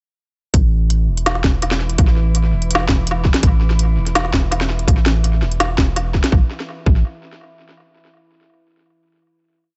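Over a sparse half-time beat at 166 BPM, this dark and cinematic drum and bass piece drops at 0.5 seconds with a hard-clipped electronic kick, a woody snare and crisp hats carrying tape echo, long gliding sine-deep 808-style bass notes on an A5 chord, and an eerie, nasal, metallic drone with chorus entering at 1.1 seconds, before the bass and kick carry the final note from 6.3 seconds in a dry, echo-heavy mix.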